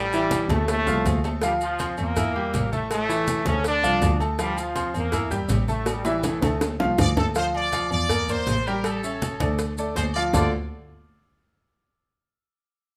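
Salsa in D minor at 162 BPM, passionate and driving and cut from a longer piece, opens with a punchy, brilliant trombone section carrying the melody over a bright, up-front concert grand piano with audible action noise and a rich, bowed double bass singing with vibrato and portamento. Close, dry congas and soft-handed cowbell and bongos sit in the background beside saturated, ringing timbales with agogo bells and grainy maracas, with drum fills at the start and again from 5.9 seconds. At 7.0 seconds a trumpet section with light vibrato takes over the melody up front, the whole band set in a moderate large studio reverb.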